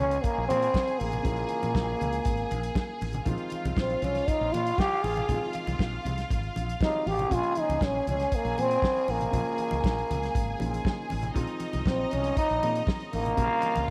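Disco at 119 BPM in Bb minor with a sultry, glamorous mood, led by a raspy, growling trombone solo up front with tape echo, set against a biting, bright bowed string section, a grand piano in the background, a round, punchy fretless bass with analog chorus, damped low-tuned congas, and a dark, smooth soul drum kit with a punchy kick, all in light reverb and small-room ambience over a Bbm7 to Ab6 vamp.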